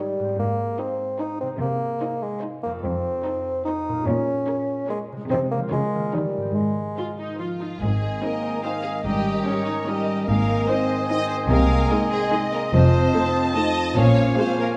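Cinematic, whimsical film cue in 3/4 with a mischievous, magical mood, where warm bowed violin sections carry the melody and a second line over viola accompaniment, a close mellow bassoon up front, ringing fingerpicked harp arpeggios and smooth cello bass from 0.4 seconds, before the second pass at 7.8 seconds adds a clear oboe, a very quiet roomy clarinet and a pure silver flute on second lines, dark double basses with soft attacks and portamento, and background French horns holding sustained chords from 7.4 seconds, all bathed in a wet scoring-stage reverb with a dark, warm production.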